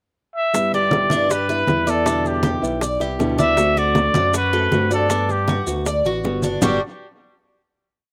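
A breathy, intimate trumpet with slapback echo leads this relaxed Cuban son and guajira piece with hook-like phrases, over a fingerpicked nylon-string guitar, a bright, metallic Cuban tres weaving an arpeggiated guajeo from 0.7 seconds, a smooth synth bass tumbao that anticipates the chords, thick-skinned, low-tuned congas, tight, high-tuned bongos set in the background and grainy maracas, heard in a dry outdoor setting that closes on a final Gmaj7 chord with its third omitted at 6.6 seconds.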